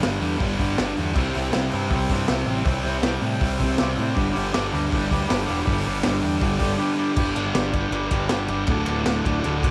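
A raw, lightly reverberant studio sound with a touch of room ambience frames this rowdy, swaggering garage rock excerpt, cut from a longer piece and driven by a straight 4/4 pulse. Up front, a thick, bright fuzz guitar plays a double-tracked, picked riff, joined from the start by a growling, overdriven electric bass fed both direct and through an amp. The acoustic drum kit sits in a small, pumping room, with a high-tuned snare, punchy kick, hi-hat, ride and crash all sounding saturated and gritty under a rolled-off top. At 1.1 seconds a vintage combo organ slips in behind them with buzzy, clean sustained chords that stay in the background. The harmony moves from G5 to C and back to G before a new section opens at 7.2 seconds and lands on D near the close.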